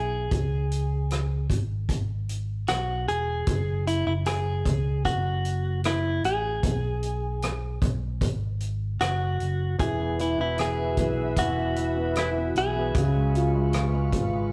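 A rough rehearsal-room recording with light reverb frames this hopeful, tender pop ballad fragment, in which a clean, compressed electric guitar recorded direct carries the melody through spring reverb. Beneath it, a dark, round fingered electric bass and a natural small-room drum kit of hi-hat, punchy kick and rim click hold a straight feel. A warm, open baby grand piano with long sustain enters at 9.8 seconds, and a glassy, ethereal FM pad with warbling ensemble chorus and built-in reverb follows at 10.2 seconds to add mellow sustained chords.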